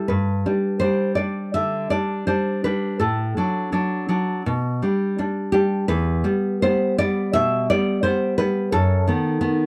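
With uneven, rubato beats around 84 BPM in 4/4, this wistful, intimate fragment of a romantic solo classical guitar piece in G major features a woody, full-bodied nylon-string guitar fingerpicked up front on old strings, spanning E2 to E5 and moving from G through D/A, G/B and Em to B7/F# at 8.7 seconds, all captured in a dry, close 1970s-style studio recording with small room ambience.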